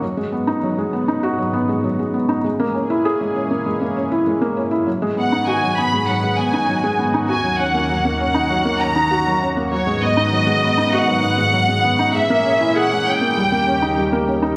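Intimate and hypnotic, this electronica passage, cut from a longer piece, opens on a mellow, felt-muted upright piano riff with digital delay over a thick, detuned sawtooth pad that fades in beneath it, its warbling chorus and sidechain pumping holding sustained chords. At 5.2 seconds a rich studio violin section enters with a smooth, bowed vibrato melody up high, also touched by digital delay. A recital-hall reverb wraps the whole, while the minor-seventh harmony cycles and closes on a dominant chord.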